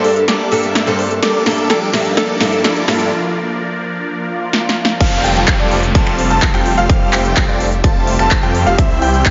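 Bathed in a lush hall reverb with a muffled, capped top end, this anthemic, euphoric festival progressive house excerpt in F major runs at 127 BPM. It opens on a build-up with a vibrato-laden, close-miked alto saxophone and a boxy, picked ladder-braced acoustic guitar set against a huge, bright, phased supersaw lead riff, a slow-attack supersaw pad under a filter sweep, a tape-toned big-room kit of punchy snare, finger snaps, handclaps, crisp hats and crash, and background risers, swells and a downlifter. After a break from 3.1 seconds, the drop lands at 5.0 seconds with a punchy, up-front electronic kick, a thick, chorused detuned saw bass and dark, mellow grand piano arpeggios, while sidechain pumping drives the lead, pad, bass and piano.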